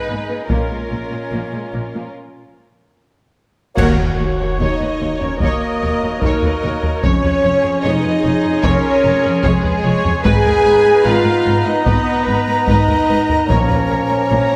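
A lush violin section carries the melody over a second violin line and mellow, distant woodwind chords, with violas, clear cellos and woody double basses filling out the harmony and bass in this relentless, dramatic epic orchestral film cue in Eb minor at 74 BPM. Sustained French horn chords soon join, roomy and prominent, while compressed, saturated taiko drums drive the music. At 3.8 s a full accent hits, with bright clash cymbals and concert bass drum, round soft-mallet timpani and a huge, barely audible impact, all set in a generous scoring-stage reverb; the timpani return near the close at 13.5 s in this excerpt from a longer piece.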